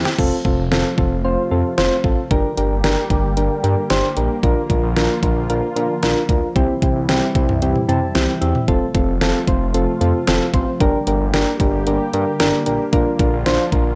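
Lightly reverberant, this upbeat, nostalgic synth-pop passage, cut from a longer piece, opens on a drum fill from an overdriven, up-front electronic kit with a knocking kick, deep snare, hi-hat, toms and crash. Soft, round electric-piano-like synth keys with a gentle, vintage chorus warble carry the accompaniment over a smooth sawtooth-and-square bass. A swirling, detuned analog pad sustains the chords through phaser and chorus as the harmony cycles from F through Gm, Bb and C, with a brief keys fill from 7.6 to 8.7 seconds.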